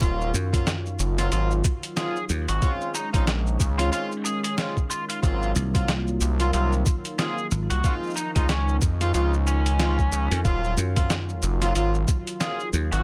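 Gritty and swaggering, this swung glitch hop clip pairs a thumpy, pitched-down electronic kick and a tape-warm boom bap kit of hi-hat, shaker and snare with an aggressive, wave-folded synth bass and a foam-muted, growly slap bass, while tight horn stabs with dub echo and a background analog pad pump against the sidechain alongside an overdriven, biting lead guitar that enters at 2.0 seconds.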